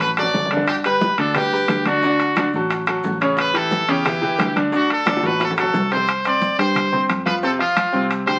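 A straight 4/4 salsa groove at 178 BPM drives this sunny, danceable excerpt, opening with a drum fill and returning to another from 5.1 to 6.1 s. Ringing metal-shell timbales sit close and dry, while damped, thin-skinned congas and round, low-tuned bongos stay in the background, the bongos dropping out at 6.0 s; grainy, mellow maracas sit very quiet underneath. A fingered electric bass, dark, punchy and foam-muted, anchors the low end, and a woody, polished upright piano with short sustain plays the accompaniment up front. Over it a brilliant trumpet takes the solo melody, forceful and present, with vibrato and scooped notes in a pop style. The harmony moves through D, G and A7 before shifting to C5 and Fsus2 in the closing section from 6.1 s, and the recording carries the vinyl crackle of a very old 78 rpm record within a moderate studio ambience.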